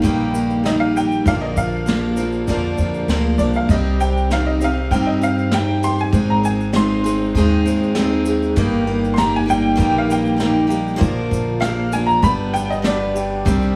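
A straight 4/4 pulse at 98 BPM in C minor carries this haunting, reflective acoustic folk excerpt, where a bright, slightly detuned upright piano with audible action noise takes the melody as a solo throughout, over a picked steel-string acoustic guitar up front, a dark, lo-fi electric guitar playing fingered arpeggios through a small old amp with a tremolo effect, a woody, growly pizzicato upright bass, a distant, roomy brush drum kit with kick, ride and snare, and a grainy tube shaker in the background, all in light reverb.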